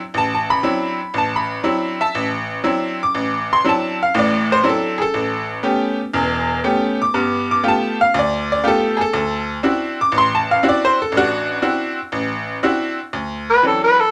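A jangly, metallic tack piano opens this rollicking swing blues at 120 BPM in D mixolydian, its bright, percussive vintage tone up front as it comps through D9, A9 and G9 chords in a small, reverberant room. At 13.5 seconds a growling tenor saxophone steps forward for a swaggering jazz solo moment, raspy and breathy with a soft attack, just as this fragment of a longer piece cuts off.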